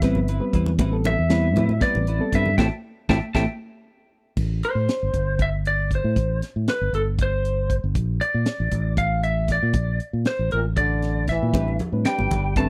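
Electric jazz fusion excerpt in 7/8 and A minor at 234 BPM, nocturnal and driving, with a twangy, slightly broken-up lead guitar carrying the melody over a round fingered bass and tight funk drum kit with a high-tuned snare, while reedy electric piano, dark chorused clean guitar stabs and ringing congas appear at the start and return at 11.5 seconds, a band accent hits from 2.6 seconds, and a bright, distant trombone with vibrato adds a second line from 10.5 seconds in a dry, close 1970s-style studio sound.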